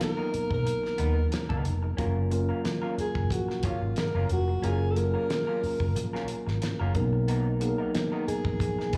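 A 91 BPM groove in 4/4 with a gentle 16th-note swing underpins this smooth, lush 1970s-style soul piece in F# major, cut from a longer performance and heard as a live gig through a club PA with light reverb. A dry, damped drum kit with a fat snare and tight kick sits alongside a dark, round, foam-muted bass that enters at 0.3 s and stays up front, while a mellow tine electric piano and a slightly broken-up, lo-fi guitar riff through a small old amp fill out the Bmaj7 and F#maj7 harmony. Over it, a breathy, close-miked alto saxophone carries the melody with subtone, vibrato and scooped notes, its intimate sound coloured by slapback and tape echo.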